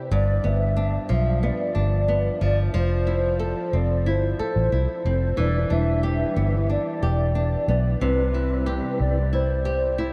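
A dreamy, reverb-soaked haze wraps this sunny indie pop fragment, where a hollow, woody synth lead carries the melody over dark fingerpicked flamenco guitar with a subtle chorus and warbly pitch drift, a round, punchy foam-muted electric bass sitting up front, and a soft flute-like tonewheel organ with fast rotary speaker and key click drifting in the background from 5.4 to 9.2 seconds as the chords move from G7 through Fmaj7 and Em7 to Cmaj7.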